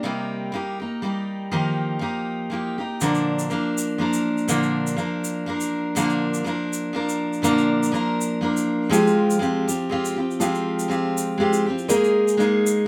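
This excerpt from a longer acoustic folk piece moves in an easy 3/4 at 122 BPM, its eighth notes carrying a light swing. A bright, full-bodied steel-string guitar sits up front from the first second, picking out the accompaniment over a gentle, warm progression that starts on Cm7 and Ebadd9 before settling onto Bb. At 3.0 seconds a grainy egg shaker joins quietly in the background, adding a small-room texture as the music opens into a new section. From 8.9 seconds a dark upright piano adds mellow arpeggios, its woody, slightly detuned tone, audible action noise and long sustain giving the close a worn, intimate color as the chords shift to Fmadd9 and then Absus2. A moderate studio ambience surrounds the trio.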